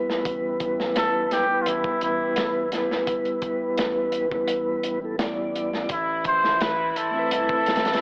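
This recording sounds like a worn cassette heard through an AM radio, with warbling pitch drift and a wet spring reverb hanging over it. It is a brooding, cinematic trip hop passage cut from a longer piece, built on a mellow tonewheel organ whose soft, flute-like chords turn through a slow rotary speaker with tremolo and sit up front. A crunchy breakbeat kit of hi-hat, tight kick and snare keeps a straight feel, dark and gritty with a rolled-off top, while a round analog bass hums deep in the background. From 1.0 seconds a cup-muted trumpet carries the melody up front, veiled and vintage in tone with jazz-style vibrato. At 5.9 seconds the harmony moves from Em/A to Amadd9 as a studio string section enters with floating, sul tasto sustained chords.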